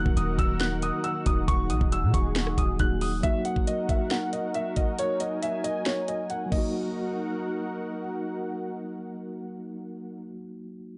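Hip hop and trap in Eb minor at 137 BPM with a half-time feel, this brooding, melancholic excerpt opens with a dark, intimate concert grand carrying the high melody through low-pass filtering and analog delay, its action noise audible, over a mellow, clean tine electric piano accompaniment heard through its built-in speakers. A detuned sawtooth pad with chorus adds slow-attack, warbling sustained chords, while a boomy, sine-based 808-style bass with a noise layer drops out at 3.2 seconds. Up-front electronic trap drums with a knocking kick, sharp snare, metallic hats, rim clicks and crash stop at 6.6 seconds, the piano melody ends at 8.0 seconds, and the dry, gritty cassette-tape sound keeps the top end dull.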